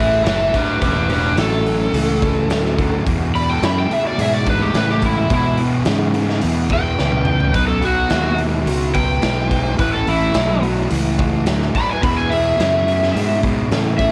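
A bright, overdriven slide guitar carries the melody up front from the opening moment, joined at once by a darker, smooth picked lead guitar in the background, a double-tracked fuzz guitar riff and a growly, punchy fingered bass with fuzz and overdrive. A raw garage drum kit enters at 0.3 seconds with a saturated, gritty sound, a punchy kick and a medium-tuned snare set in a bright stone room that pumps around the hits. This is a raunchy, driving cut of blues rock in the southern rock vein, moving at 107 BPM in a straight 4/4 and rooted in E mixolydian. Slapback echo gives both lead guitars a snappy doubling, while the distorted riff guitar lays a warm bed beneath them. The harmony moves from A to E, then shifts to B at 7.5 seconds just after a drum fill, before settling back through A and E. Light reverb ties the band together in a raw, live-sounding space across this short excerpt from a longer piece.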